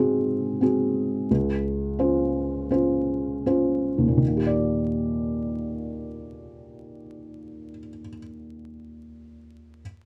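In a straight 4/4 at 77-90 BPM that slows over the first 4.2 seconds, this tender, heartfelt folk fragment in Eb major, cut from a longer piece, is carried by a solo felt-muted upright piano spanning Db2 to D5. Its mellow, intimate tone sits up front, moving from Ab7 to Dbmaj7 before settling on Ebmaj7 as a new section begins. Close, detailed miking, light reverb and a bed of vinyl crackle frame the sound.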